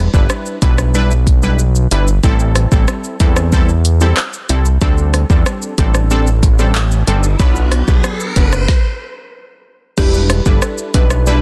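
A tough, hypnotic dancehall groove in E minor at 93 BPM opens on bright, punchy detuned synth brass stabs with chorus and a fat, thick sawtooth bass sitting up front, joined almost at once by a layered electronic deep house kit with a deep kick, woody soft-clipped snare, smooth hats, handclaps, rim clicks, shaker and crash. Tight, high-tuned acoustic bongos slip in very quietly at 4.8 seconds as the chords, having moved from Em7 to Am7, reach D7sus4 and then Bm, and an electronic riser arrives at 6.3 seconds before the groove stops for a brief break. At 10.0 seconds the groove returns on Em7 and a short marimba melody played with medium mallets on rosewood bars enters with delay, before this excerpt cuts off.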